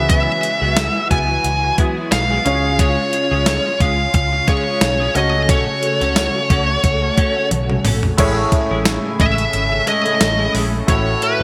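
This nostalgic, moody 1980s-style pop excerpt opens with a dark, high-gain lead guitar carrying the melody up front, its distortion trailed by digital delay, over a concert grand piano with audible action noise, deep bass and long sustain, softened by analog chorus. A swirling, sawtooth string machine holds slow-attack chords colored by ensemble chorus and phaser, while a foam-muted fingered bass supplies a round, dark low end. From 0.1 seconds a twangy, compressed twelve-string electric guitar picks a riff in the background, and a sampler-style 12-bit drum machine sets a lightly swung groove, with a thumpy kick, medium-tuned snare, hi-hat, tambourine, crash and toms treated with gated reverb. A drum fill at 7.5 seconds leads into a new section at 8.2 seconds as the harmony shifts toward a major-seventh color. A moderate plate reverb and bright digital production give the whole a glossy period sheen.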